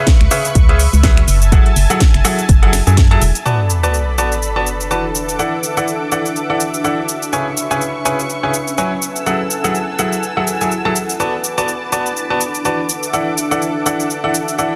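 A silky analog string pad and a brilliant concert grand piano riff, its action noise audible, open this bittersweet, energetic piano house excerpt at 124 BPM with swung 16ths, both pumping from sidechain and the piano trailing a digital delay, joined by a punchy electronic kick, a house kit of cracking snare, metallic hats, finger snaps and shaker, and a hollow, organ-like FM bass with tube saturation. Kick and bass fall away just before an up-front sub drop at 3.5 s, and from 4.3 s an ethereal, mellow airy pad with chorus and its own reverb joins the strings over chords moving through C#m7, F#m9 and E9sus4. Light reverb sits under a dense, heavily limited modern master.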